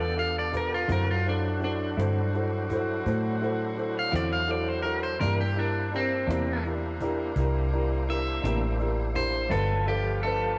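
An electric guitar at the edge of break-up carries the melody up front, its picked, twangy tone bathed in spring reverb, in this soulful, laid-back slow blues cut from a longer piece. It moves at 56 BPM in 12/8 with a straight feel, tuned to A4 = 444 Hz, over a chord progression of G9, D9 and C9 that returns to G9 at 9.5 seconds. A round, foam-muted electric bass sits equally forward, while a dark, woody upright piano adds mellow accompaniment and a clean, compressed electric guitar with tremolo plays in the background until 9.7 seconds. Behind them, a full tonewheel organ holds sustained chords through a slow rotary speaker with light overdrive and chorus vibrato, joined by a tight saxophone section with light vibrato in a vintage jazz-band style. A snappy cajon with snares, close and dry, keeps time from 0.2 seconds at a low level, and the whole take has the rough feel of a rehearsal-room recording in a moderate stone room.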